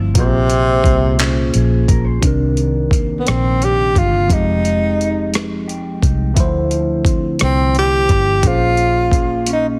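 A heavily compressed, radio-like sound with light reverb frames this late-night, yearning slow R&B excerpt in 6/8 at 58 BPM, where a breathy, whispered tenor saxophone with vibrato and slapback echo carries the melody up front over a worn, slightly out-of-tune tine electric piano run through a phaser, a round, foam-muted fingered bass, a dark, clean electric guitar in the background, and a gritty, overdriven sampler-style drum kit of thumpy kick, hi-hat, rim click and handclaps that closes with a fill at 9.5 seconds, as the chords move from Bbm9 through Cm9, Fm9 and Dm9.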